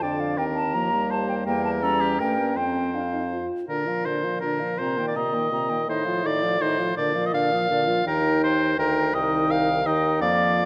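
Dramatic and stormy, this quick classical-period excerpt for wind quintet in Bb major moves in a brisk 3/4 at 166 BPM, with a hollow, pure flute carrying the melody with vibrato, an up-front, smooth-topped oboe on the second line, a soft-attacked clarinet and a mellow French horn filling the accompaniment, and a bassoon with light vibrato anchoring the bass, all heard in a moderate concert hall reverb as the harmony turns through Eb, Edim7 and Cm7/Bb.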